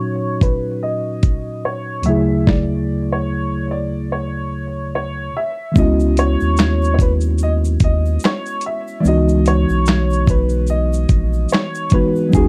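A filter sweep opens this hazy, reflective lo-fi hip hop excerpt at 73 BPM with a swung 16th feel, as a clear, woody upright piano carries a slightly detuned melody over a mellow, worn tine electric piano bathed in plate reverb, both low-pass filtered, while a gritty, overdriven sampler-style drum kit with thumpy kick, handclaps, hi-hat, shaker and snare enters at 0.4 seconds, and at 5.8 seconds a deep, saturated sub bass and a very quiet, grainy egg shaker join as the chords move from D#m7 through Dmaj9#11 to C#m11 in a dark mix with light reverb.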